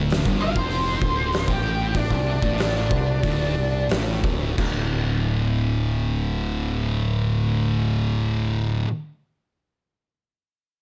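A light reverb hangs over this brooding, hypnotic stoner and doom metal fragment, where two thick, dark fuzz guitars grind out a picked riff, one of them set in the background, above a growling, bright, overdriven fingered bass. Up front, an oversized low-tuned acoustic kit with a fat snare, punchy kick and rolled-off top booms in a bright stone room until 4.7 s, as the music slows through its opening stretch. An octave-fuzz lead guitar with analog delay, also up front, plays a short solo melody from 0.4 s to 3.9 s before the harmony shifts to a bare power chord.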